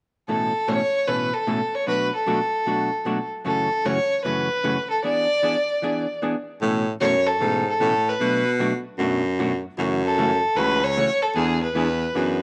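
A moderate echo-chamber reverb and small-room ambience frame this cheerful, down-home western swing cut from a longer piece, moving at 152 BPM in a swung 4/4 in A major. A single bowed fiddle with a woody tone and light vibrato carries the melody up front from 0.3 seconds. Beside it, a clean, picked hollow-body electric archtop guitar comps through a cycle of Aadd9, Bm7, F#m7 and E7. At 6.6 seconds a bright, jazz-style baritone saxophone with vibrato enters to take the bass line as the chord cycle repeats.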